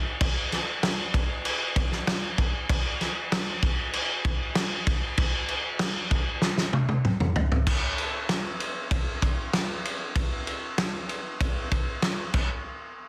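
A loose indie drum kit sits up front in this anthemic, bittersweet rock excerpt at 96 BPM in a straight 4/4, its punchy kick, fat snare, toms, and dark crash and ride cymbals carrying a mid-forward, rolled-off acoustic tone in a dry studio room, with a drum fill from 6.4 to 7.7 seconds leading into a new section under a dense, heavily limited modern master.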